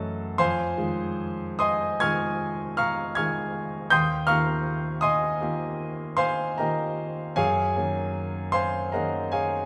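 A clear, intimate grand piano sits up front with audible action noise, playing a hazy, wistful impressionist classical solo in a slow, rubato 9/8 at about 46-54 BPM across a range from Eb2 to Ab6, moving from Fm7 at 0.4 seconds to Ebadd9 at 3.9 seconds and Gb69 at 7.4 seconds, all bathed in a wet recital-hall reverb in this brief excerpt from a longer piece.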